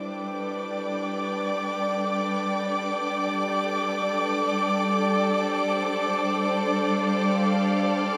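A dark, woody string section stands up front in this serene, luminous ambient piece, holding sustained chords in free time and fading in across the full 8.2 seconds, its bowed sul tasto tone carrying gentle vibrato and a shimmer reverb. Above it, a rich chamber violin section spins a focused, smooth-topped texture high in the register, also bowed with vibrato and bathed in shimmer. Beneath both, a very quiet pedal harmonium sustains a reedy, breathing drone. The harmony rests in G mixolydian, moving from Gadd9 to F6/G at 4.7 seconds over the steady G foundation. A lush hall reverb soaks the whole mix, lending this short fragment of a longer piece a dreamy, suspended glow.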